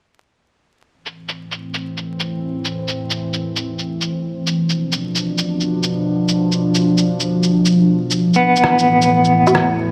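Ghostly and nocturnal, this future garage excerpt drifts on a detuned, warbling pad of sustained chords that fades in with lo-fi sampler grit, chorus and phaser, all under vinyl crackle and digital ambience. Muffled, pitched-down shaker, rim click and woodblock sit up front with a compressed, sampler-style character and a filter sweep, adding a swung sixteenth-note feel. At 8.4 seconds a clean, picked electric guitar enters briefly with tremolo and analog delay.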